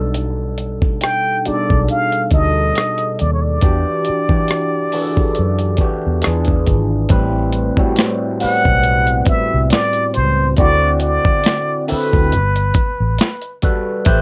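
A breathy plunger-muted trumpet with light vibrato, scooped notes and a slapback echo carries the jazz-style melody from 1.0 seconds in this smooth, introspective neo-soul R&B excerpt. It is set over a barky, gritty electric piano with phaser played through a combo amp, a dark, round foam-muted electric bass, and a dusty, compressed, overdriven sampler-style drum kit with a thumpy kick and medium-tuned snare, all in a dry room.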